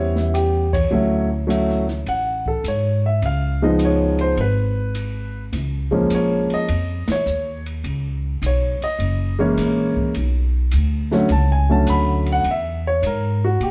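An up-front, natural-sounding warm grand piano carries the melody in this relaxed, playful swinging jazz piano trio excerpt at 104 BPM, backed by a woody, thumpy pizzicato upright bass on gut strings and an airy, polished drum kit with dark cymbals and a boomy kick that enters at 0.2 seconds, with the band hitting accents together at 0.6 and 7.0 seconds in a moderate stone-room reverb that gives the feel of musicians playing live in one space.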